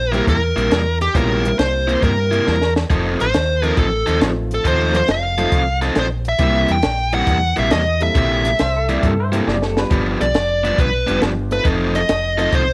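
Electric blues shuffle with a laid-back, soulful swing, cut from a longer piece, where a dark, smooth overdriven lead guitar with slapback echo carries the melody over a round, punchy fingered dub bass, a hollow-bodied overdriven semi-hollow guitar riff, a worn, slightly detuned upright piano with audible action noise sitting in the background, and a compact cocktail kit with a high-tuned snare and fills at 2.5 and 9.5 seconds, while a compressed, slightly broken-up second guitar with subtle chorus briefly joins from 8.6 to 10.1 seconds, all in a light studio reverb.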